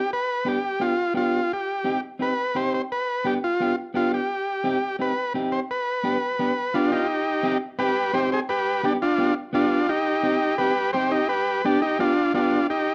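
Passionate and fiery, this latin excerpt drives along at 172 BPM in a straight 4/4, set in C harmonic minor. An overdriven combo organ carries the melody from the opening second, its vintage, buzzy tone shaken by heavy vibrato and placed up front. A clean electric guitar enters at 0.4 seconds as accompaniment, picked with a warm sound that also sits up front. The harmony swings steadily between G7 and Cm, and the same section plays twice, the second pass starting at 7.1 seconds. A wet studio reverb and a dark, warm production give the pair a shadowy atmosphere.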